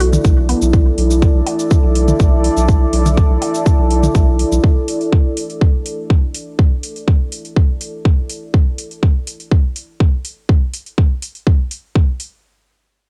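This quirky, sparse minimal techno clip, cut from a longer piece, opens with a squelchy, resonant blip pluck that sounds for only the first 0.5 seconds, treated with chorus, tape echo, cassette coloring and sidechain pumping. Beneath it, a round analog bass sustains a deep, dark low note with pumping movement until 4.6 seconds. Alongside, a moody, evolving pad carries chorus and its own reverb, slowly blooming through a mellow haze before fading out at 8.5 seconds. The rhythm rests on a punchy, up-front electronic kick with tape warmth and small-room character, joined by metallic electronic hi-hats and cabasa that run through the whole clip at a lower level. Overdriven electronic toms and percussion blips add quirky detail in the background, and the whole home cassette recording sits in a light reverb over a single minor chord.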